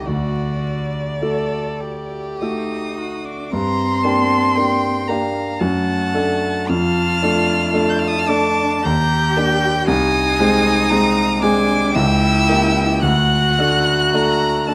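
In a rubato 3/4 at 48-59 BPM, this elegiac, yearning slow romantic movement for piano quartet, cut from a longer piece, sets a rich, focused bowed violin melody with vibrato high above a second violin and a clear cello carrying inner lines, all over an up-front concert grand piano accompaniment with deep bass and an open sound, moving from D into a new section at 3.5 seconds through Gm, Ebmaj7 and C#dim7 before returning to D, heard through close, detailed microphones with light reverb and vinyl crackle.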